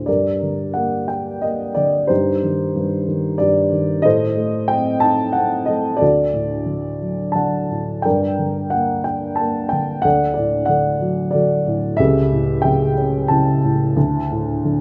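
Relaxed and hopeful, this lyrical classical solo in a flexible, rubato triple metre features a dark, woody upright piano with long sustain, set up front in a moderate recital-hall reverb, moving through a single section of minor-key harmony that comes to rest on an open D chord at 14.0 seconds in this brief passage cut from a longer piece.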